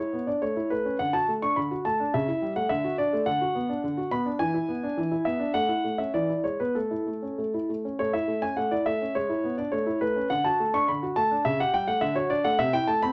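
A classical-period piano sonatina in A major, playful and cheerful, moves at 104 BPM in 2/4 with a flexible rubato feel, its opening phrase returning at 8.0 seconds in this brief excerpt cut from a longer piece. A solo concert grand carries everything from 0.0 to 13.1 seconds across a range from C3 to C#6, sounding warm, intimate and polished, with deep bass, long sustain and audible action noise, and it sits up front. Light reverb surrounds the instrument, and the harmony circles through A, D and E7 before closing on Am/C.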